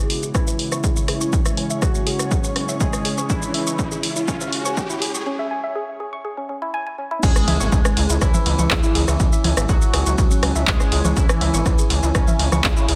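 Melodic techno with a melancholic yet driving mood, this excerpt in straight 4/4 opens on a build-up where a juicy, resonant sweep polysynth carries the melody over a deep, moody analog pad in the background, while a woody wave-folded pluck spins arpeggios through a filter sweep and dub echo. A cloudy, blurred granular cloud pad drifts underneath at first, and a punchy analog drum machine of congas, handclaps, rim click, shaker, hi-hat, ride and crash cymbal sits up front beside an electronic kick, both re-recorded in a large room. A riser and impact build in the background, and a drum fill leads into a break at 5.3 seconds, where the granular pad stops. The drop lands at 7.2 seconds, bringing in a gritty, distorted synth bass and an airy lead with vibrato as a second line behind the melody. Sidechain pumping on the synths, pads and percussion gives the mix its breathing pulse under light reverb.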